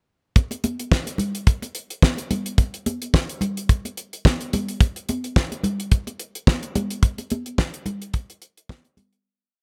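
A four-on-the-floor boogie beat at 108 BPM, with a light 16th-note swing, drives this slick, late-night piece of early-eighties boogie funk, built as a drums-and-percussion breakdown from 0.4 seconds. The damped 70s acoustic drum kit sits up front with a fat snare, tight kick and hi-hat, while high-tuned congas with a bright, thin skin add a syncopated groove of hard hand strokes, close and dry. The sound carries little reverb, and the whole piece fades out from 7.0 to 9.2 seconds.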